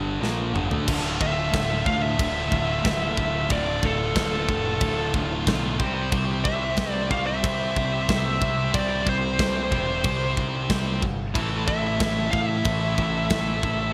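Heavy metal at 92 BPM in D minor, relentless and heavy, where two distorted electric guitars and a growling overdriven picked bass open on riffs, joined at 0.2 s by a drum fill on a tight kit with bright cymbals and gated reverb; a sludgy double-tracked guitar joins at 0.9 s as the harmony lands on Dm before moving to C, and a dark high-gain lead guitar up front carries the melody with digital delay from 1.2 s, framed by moderate plate reverb and 1980s-style digital production.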